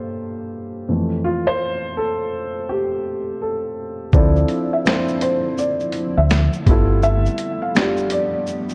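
Lo-fi hip hop in D minor at 83 BPM with a hazy, nostalgic mood, this excerpt opens with a dark, woody upright piano playing alone through cassette-tape coloring before, at 4.1 seconds, a gritty, pitched-down boom bap kit with a thumpy kick, high-tuned snare, snaps, hi-hat and shaker arrives alongside a round, up-front fingered electric bass and a soft, felt-muted piano melody, while a blurred granular pad with tremolo drifts in the background from 5.3 seconds, all wrapped in worn, warbling old tape and light reverb.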